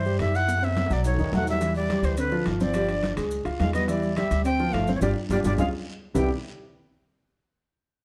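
Afro-Cuban jazz with a sophisticated, danceable mood, heard in a brief cut from a longer piece in a brisk, straight four. A breathy, bright flute with a crisp, chiffy attack and vibrato carries the melody up front, while a woody, growly pizzicato upright bass sits equally forward beneath it. A concert grand piano with a deep low end supplies the accompaniment, and a mellow trombone with light vibrato enters in the background at 1.3 seconds as a second line. The percussion bed blends very quiet, soft-handed, ringing congas, metal-shelled timbales in the background and a raspy guiro, all three captured in a live room, along with grainy maracas set back in a small room. Drum fills arrive around 0.5 and 5.0 seconds, the second joined by a full-band accent, as the harmony moves through Em7, Dm7 and Db7 before settling on Cmaj7 near the close, all within a dark, warm production touched by light reverb.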